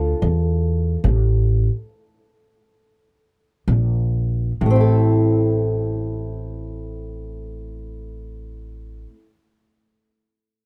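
A fingerpicked acoustic guitar and a pizzicato upright bass open this short, smoky cut from a longer acoustic country blues piece in A minor, with a slow, brooding swing in 4/4 at around 62 to 74 BPM. The old ladder-braced guitar carries the melody with a boxy, woody tone and the dull edge of old strings. Beneath it, the steel-strung upright bass sits dark and growly, its notes thumpy and low. The music starts on a D minor chord and slows through the opening, then the band stops between 1.1 and 3.7 seconds before settling onto A minor at 4.6 seconds. Both instruments sit up front in a dry, rough home-demo sound, and the bass drops out at 9.0 seconds, just before the guitar ends at 9.3 seconds.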